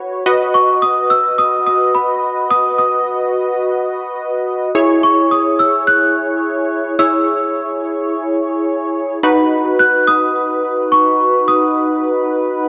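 A lush, wet hall reverb surrounds this short pop excerpt, giving its two up-front parts a spacious, glowing sheen. At 107 BPM in a straight 4/4 in B major, the mood is wistful yet upbeat. A funky polysynth comp carries the accompaniment from the very start, its detuned sawtooth and triangle tones shaped into a punchy filter pluck with a fast attack, sustained and evolving under a chorus effect in the range from D#4 to D#5. At 0.5 seconds a celesta takes the melody high above, bell-like, delicate and sweet, its hard felt hammers giving a bright, mid-forward ring that tape echo trails behind. The harmony moves from B to E6 and back to B at 9.2 seconds, where a new section begins and carries both parts through to the cut at 12.7 seconds.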